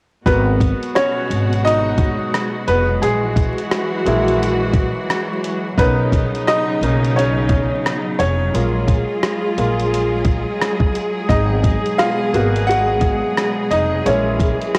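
A cassette-worn home recording with vinyl crackle and light reverb frames this nostalgic, reflective lo-fi hip hop excerpt, its swung 4/4 groove carried by a dusty, gritty, compressed sampler-style drum kit of thumpy kick, hi-hat and rim click that was re-recorded in a large room. A bright, woody upright piano sits up front with a brilliant, short-sustained solo from 0.3 seconds, while a lush, smooth string section holds bowed chords with vibrato and a growly pizzicato upright bass with steel strings anchors the low end until 14.5 seconds. The harmony drifts through rich minor and major ninth chords before the cut at 14.8 seconds.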